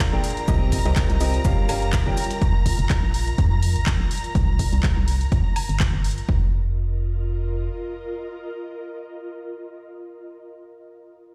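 Energetic and soulful, this piano house fragment opens with a bright, woody upright piano riff and a gritty, pitched-up breakbeat sampler-style kit of hi-hat, shaker and snare, both ending at 2.4 s. Meanwhile a punchy, up-front electronic kick and a tape-warm house kit of handclaps, hi-hat and woodblock carry on to about 6.3 s beneath smooth, vibrato-laden bowed strings and a hollow, dark, organ-like FM bass that pumps with sidechain and moves through a filter sweep. An ethereal, detuned pad with ensemble chorus and built-in reverb fades yet lingers to 10.1 s, all set in a bare, stone-room ambience.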